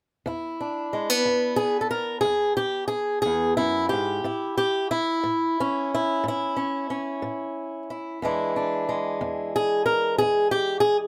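A fingerpicked acoustic guitar opens at 0.3 seconds and carries this short excerpt of acoustic country blues alone, with a swaggering, gritty mood. The pace is a slow 60 BPM in 12/8 with a straight feel, centred in E mixolydian. The guitar sits up front, its fresh strings giving a warm tone over a boxy body, and its swing-style picking spans from E2 up to A#4. The harmony moves from E7 to A at 4.2 seconds and back to E7 at 8.2 seconds, before the guitar stops at 11.1 seconds. Close, detailed microphones catch the instrument in light reverb, and the passage is cut from a longer piece.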